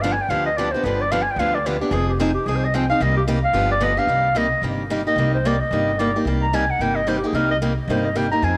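Acoustic string swing in the jazz manouche style, this brisk C minor passage at 221 BPM feels swinging and bittersweet as a clarinet solos throughout, its warm, vintage subtone, vibrato and soft attack sitting up front. A boxy, picked parlour-style steel-string acoustic guitar shares the foreground in accompaniment, while a pizzicato upright bass with gut strings supplies a woody, dark, thumpy low end. Moderate plate reverb surrounds this short excerpt, which moves through G7, Fm7, Cm7 and G7 before landing on Cm7 at 4.1 seconds.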